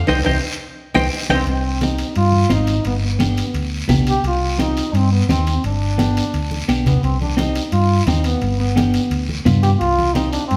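A punchy, smooth-topped trombone takes a fiery solo from 1.5 seconds to the end of this driving cumbia excerpt at 173 BPM in C harmonic minor, after a bright, twangy, direct-recorded electric guitar with spring reverb carries the melody until 1.4 seconds over a band accent and drum fill, while a clean fingered electric guitar accompanies, a dark, round hollow-body bass sits up front, raspy guiro scrapes along, and ringing metal-shell timbales and thin-skinned congas play in the background of a stone room's reverb.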